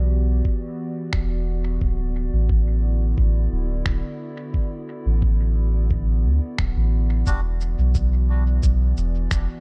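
A dark, warm digital ambience frames this meditative, spacious slice of ambient dub at 88 BPM, where a warbling, detuned, nostalgic pad sustains mellow chords through chorus and reverb while a deep, round sub bass sits up front from the first second. A muffled, thumpy sampler-style kick enters at 0.4 seconds, followed at 1.1 seconds by compressed, tape-warm finger snaps and shaker trailing dub echoes, as the harmony moves from Em9 to D69. At 7.3 seconds a reedy, breathy melodica stab lands on E7sus2 and repeats in a dub echo before the cut ends.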